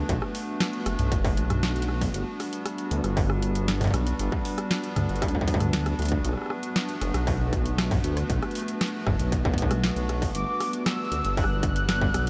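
IDM at 117 BPM with a melancholic, intricate mood, this excerpt opens on a warbling, nostalgic tape-like pad holding Bm7 and Gmaj7 chords with chorus and sidechain pumping over a dark, rumbling detuned saw bass with tube saturation, a dry, up-front analog drum machine of metallic hats, rim click, tonal snare and toms, and a distorted electronic kick, until a velvety, chorused synth lead with delay and vibrato enters high at 10.3 seconds, all set in a dreamy mix soaked in huge ambient reverb.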